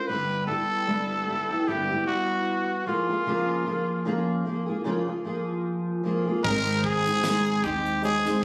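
Captured on a phone in the room with moderate studio reverb and compression, this short cut from an easy-going, heartfelt acoustic pop piece moves at 75 BPM in 4/4 with a light sixteenth-note swing. A raspy, growling trumpet carries the melody up front, with vibrato and scooped notes, over a double-tracked, dark fingerpicked steel-string acoustic guitar. At 6.4 seconds a mellow, woody upright piano, a round, foam-muted electric bass and a polished studio kit with bright cymbals and a tight kick join in the background, and a jingly tambourine sounds very quietly at 7.2 seconds.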